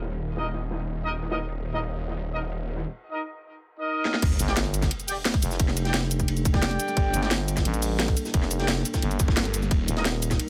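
A snarling, detuned saw bass opens this dark, mechanical technical drum and bass excerpt at 175 BPM in G minor, heavily distorted and pumping against a moody analog pad with chorus and phaser, while a gritty breakbeat kit with a rolled-off top sits in the background and a vintage brass section plays stabs with tape echo. At 4.2 seconds the drop arrives after a drum fill. It brings a tight overdriven electronic kick, a layered kit with a cracking snare, bright hats, cabasa and crash, and a sub drop, with a thick FM bass growling underneath moments later as the harmony moves from Eb to Gmadd9, all framed by a small room ambience.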